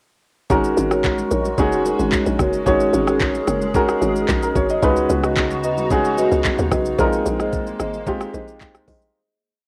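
A cassette-worn home recording in a snug booth, this relaxed, soulful amapiano piece at 111 BPM rides a drop from 0.5 s: a clear, up-front grand piano pushes drop-2 chords with grace notes and short fills, a hollow, flute-like pad warbles under ensemble chorus and sidechain pumping, woody marimba stabs trail analog delay, percussive log drum bass bursts bounce with slides, an electronic afro-pop kit brings a knocking kick, smooth hats, handclaps, a steady shaker and syncopated rim clicks, and very quiet ringing congas sit beneath it all, before a fade-out from 7.0 s to 9.2 s.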